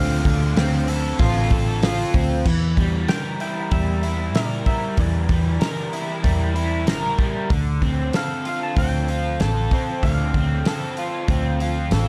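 Dreamy and melancholic, this short cut from a longer shoegaze and dream pop rock piece moves at 95 BPM in a straight 4/4 over Dm7, Em7b5 and Dm7, with a crunchy, double-tracked overdriven guitar riff bathed in analog chorus up front, a round, punchy foam-muted picked bass, a loose acoustic indie kit with a fat snare, tight kick, hi-hat and crash entering at 0.3 s, and a clean, twangy fingered guitar melody trailing tape echo in the background, all set in a small, dark-sounding room.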